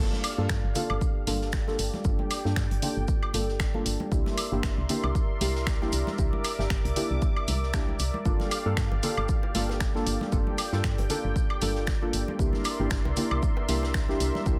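An up-front, tape-warm electronic kick drives this smooth deep house excerpt from 0.5 seconds. It joins a layered deep house kit of finger snaps, hi-hat and woodblock, bright, compressed congas and bongos in the background, and a distant, roomy soft-mallet kit with hi-hat, shaker and snare, all of which have already entered. A round, woody FM bass, dark wave-folded chord stabs with chorus and delay, and a detuned sawtooth pad with chorus all breathe with sidechain pumping as the harmony moves between Gm7 and C9, with a light swing on the sixteenths and gentle reverb around the mix.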